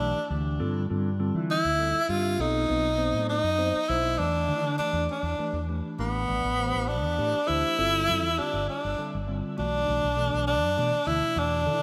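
A close-miked tenor saxophone, fretless electric bass and tine electric piano enter together in this funky, intense piece of electric jazz fusion, taken from a longer performance. It moves at 67 BPM, counted in dotted quarters, in a straight 6/8, and the harmony settles into E minor at 4.2 s, passing through chords such as Em7, Am11, G9sus4 and Bm7. Up front, the clear saxophone sings a jazz-style solo melody with vibrato and a soft attack, colored by a digital delay. Beneath it, the dark, round bass sits punchy and amped. The clean electric piano, heard through its built-in speakers, supplies accompaniment treated with phaser. A wet plate reverb with a 2.5-second tail and bright 1980s-style digital production frame the short passage, which runs to 11.8 s.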